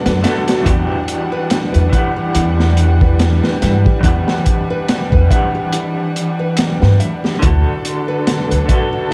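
A brief cut from a longer dark, cinematic trip hop piece in E minor at 71 BPM, opening on lush, bowed symphonic strings with vibrato, a slightly broken-up, lo-fi electric guitar carrying tremolo and tape echo, and fingerpicked nylon-string guitar arpeggios with audible finger squeak and delay. Almost at once a woody, growly pizzicato upright bass with tube saturation and a gritty, saturated breakbeat kit with a high-tuned snare and tight kick sit up front, swinging on the 16ths. The harmony moves from Bm7 to a long Em9 before settling on Bm7/D at 7.4 seconds, all within a dark, warm production and a small room's light reverb.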